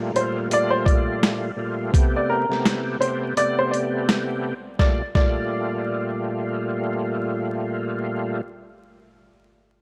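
Crackly, lightly reverberant and faintly humming, this moody, tough boom-bap hip-hop excerpt at 84 BPM in G minor sets a thick, overdriven tonewheel organ with slow rotary speaker and chorus vibrato beneath a woody, slightly detuned upright piano melody with audible action noise and tape echo, while a gritty, pitched-down sampler-style drum kit with a thumpy kick sits up front until 5.4 s, its kick muted from 3.4 to 4.8 s as the harmony moves between Gm9 and Am9.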